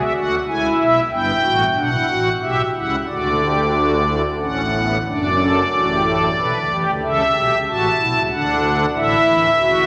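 Classical baroque-style three-part fugue in a joyful, lively 3/4, played solo on pipe organ with shimmering, soft string-celeste stops in a romantic voicing set up front, spanning deep bass tones to bright upper registers within a wet church reverb, in a brief fragment cut from a longer piece that moves through its chord changes to close on A at 9.0 seconds.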